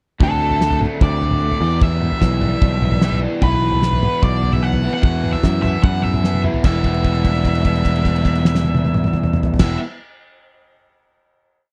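An octave-fuzz lead guitar carries a dark, distorted melody built from short, song-like motifs, with a slapback echo trailing each picked phrase. This moody, bittersweet indie rock piece moves at a brisk, straight four-beat pulse. Beneath it, an overdriven semi-hollow guitar picks arpeggios with a hollow-body tone, while a raw garage guitar rings out chords through overdrive, analog chorus and its own slapback echo. A picked electric bass, both direct and amped, anchors the low end, and a cloth-damped drum kit gives a thuddy, small-room feel with a fat snare, tight kick, dark cymbals, tom grooves and a rolled-off top. After a drum fill at 6.2 seconds, the band lands on a final chord at 6.6 seconds and holds a note until 9.6 seconds, all captured in a dry, close recording with a 1970s studio character.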